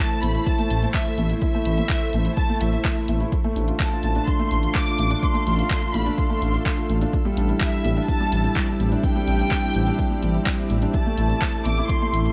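Piano and strings electronica in an intimate, hypnotic mood, cut from a longer piece, built on a felt-muted upright piano riff with audible action noise and digital delay, over a deep, rumbling detuned saw bass with sidechain pumping and chords moving from Am to Dm7/A and Cadd9/A. A dark, woody violin section carries the melody with vibrato and delay, sounding distant, while a granular cloud pad holds blurred, evolving sustained chords in the background with its own reverb and pumping. A layered deep house kit of handclaps and hi-hat plays from the start, and a punchy electronic kick joins it at 0.5 seconds, all in a lightly reverberant, soft-topped mix.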